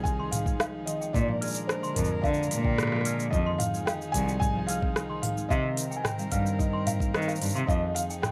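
A felt-muted upright piano sings a soft, intimate melody through digital delay and plate reverb over woody, vibrato-laden sustained chords from a dark string quartet and ringing concert harp arpeggios with their own delay, opening this delicate, autumnal folktronica excerpt in F dorian at 110 BPM, where a soft electronic kick and an up-front, tape-warm electronic kit of crisp hats, cabasa, rim click and toms arrive almost at once, a clanky, bell-like, slightly out-of-tune toy piano traces a second line in the background, and a reedy, gut-string cello takes up the bass at 1.1 s.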